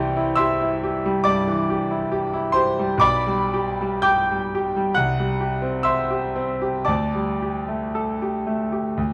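Tender and nostalgic, this brief excerpt of a romantic classical nocturne features a solo concert grand piano, brilliant and up front with deep bass spanning B1 to G6, played with expressive rubato in 4/4 over chords moving from C to G/B, back to C and onto Dsus4 at 6.9 seconds, in a dark production with light reverb.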